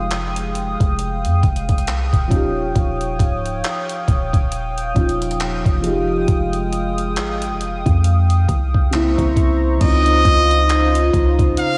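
A bright, up-front trumpet with tape echo enters at 9.8 s over a Dbmaj9 chord in this late-night, longing contemporary R&B fragment in F minor at 68 BPM with a swung 16th feel, carried by a soft felt-muted upright piano with lush chorus, a shimmering, detuned pulse-width pad, a deep, boomy 808-style bass and a gritty, compressed sampler-style drum kit with thumpy kick, handclaps, hi-hat and crash, all set in a dreamy hall reverb.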